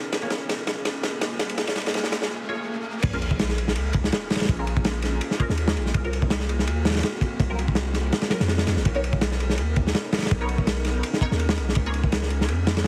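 Heavily compressed, radio-like sound with vinyl crackle and a small, lightly reverberant room gives this dark, atmospheric drum and bass cut its worn, murky character. At 165 BPM in Bb minor with a slight 16th-note swing, a crunchy, saturated breakbeat kit sits up front, its punchy kick, medium-tuned snare and dusky ride and crash cymbals rolled off at the top, while a deep, long 808-style sine bass holds sustained low notes beneath it. Behind them, an ethereal, airy pad breathes slow-attack chords through chorus, reverb and tremolo, and a muted, resonant dub chord stab, wave-folded and treated with phaser and dub echo, flickers in briefly before returning from 2.5 seconds. The opening three seconds form a build-up, with a drum fill, a filter sweep on the stab and a riser from the background effects, then a short break before the drop lands at 3.0 seconds with an impact and sub drop. From there the harmony moves through Bbm7, a rootless Ab13/C and Bmaj9 before settling on Db6, in a passage cut from a longer piece.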